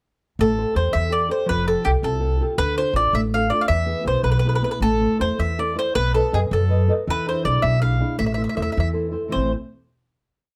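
This is a short, complete Italian folk serenade in a straight 6/8, romantic and passionate in mood. A mandolin carries the melody up front, its picked double strings giving a mellow, round tone as it spins short, hook-like motifs. Beneath it, a nylon-string guitar with a small, dusky sound plays thumb-plucked bass notes and chord figures in an oompah pattern, while a pizzicato upright bass with steel strings sits forward in the mix with a woody tone, outlining roots and fifths on the main beats. All three instruments play together from 0.4 to 9.5 seconds through a single section that moves from Am7 and Fadd9 through Dm, E, Am, B7 and E7 before settling on A minor, and the piece closes on a final chord at 9.3 seconds. Close, detailed microphones and light reverb keep the trio intimate and clear.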